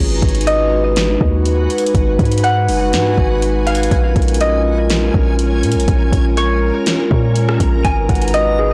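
A long, deep 808-style bass with transformer saturation anchors this spacious, ethereal cloud-rap excerpt at 122 BPM in a half-time feel, under glassy glass harmonica chords pumping with sidechain, a ringing fingerpicked harp melody through digital delay, a reversed, detuned granular texture, a soft-kicked, fat-snared electronic R&B kit with metallic hats, and a dark, clean electric guitar arpeggio entering at 7.8 s, all moving from G#m7 to A#m7 and back in a blown-out, overdriven mix.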